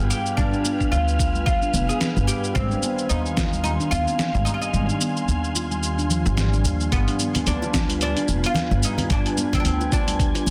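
A fretless oud sings a woody, double-stringed melody over a warbling, ethereal pad, ringing handpan arpeggios and a dark, gut-strung upright bass, with a faint breathy wind texture hovering high above, in this earthy, meditative organic downtempo excerpt at 110 BPM in G phrygian dominant, swung on the 16ths and moving between G7b9 and Abmaj7. Gritty, overdriven sampler-style drums bring hi-hat, shaker and snare, while a thumpy electronic kick enters at 0.4 seconds and drops out at 4.7 seconds before returning. Hand-struck congas and bongos join quietly in the background at 7.4 seconds, all set in a small, lightly reverberant room with a dense, heavily limited master.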